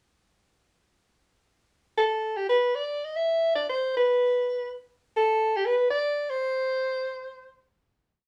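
This brief jazz piece in C major swings at 150 BPM in 4/4, with a sophisticated, warm mood. A mellow soprano saxophone plays alone from 2.0 to 7.7 seconds, shaping a motif-based melody in sentence-like phrases, with soft attacks, scooped notes and gentle vibrato. The horn sits in a small, roomy space with moderate reverb, and the recording fades out from 6.5 seconds.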